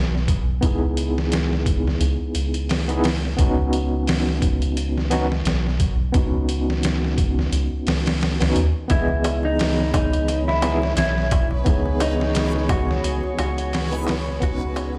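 A gritty, pitched-down sampler drum kit with a thumpy kick sits up front in this dark, melancholic trip hop excerpt at 87 BPM in C# minor, over a round sine sub bass, a barely audible sub drop at the start, and a barky, overdriven tine electric piano with tremolo moving between C#m7 and Badd9. From 8.9 seconds a clean, dark electric guitar carries the melody through tape echo, joined by a deep clay darbuka in the background, a moody detuned pad with chorus, and a faint reversed granular texture. The whole mix rings in a stony room before fading out from 12.6 seconds.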